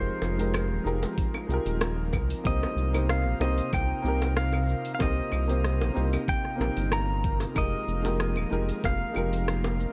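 A straight 4/4 groove at 94 BPM carries this wistful, smooth sunset chillout excerpt in F minor. An electronic R&B kit ticks along with claves, metallic hats, rim click and shaker, and tight, high-tuned bongos sit in the background. A gritty, thumpy sampler-style kick joins at 1.2 seconds. Up front, a round analog bass mixes sawtooth and sine tones with a touch of ring modulation, holding deep, sustained notes under the harmony. The harmony moves from Fm11 to Cm7 at 2.5 seconds and back to Fm11 at 7.6 seconds. A dark, intimate grand piano with audible action noise plays a tape-echoed accompaniment, while a breathy, detuned pad with a noise layer and chorus drifts in the background. On top, a clean electric pedal steel guitar, played with fingerpicks and slide, sings the melody with volume swells and tape echo, all set in light digital ambience with a dark, warm production.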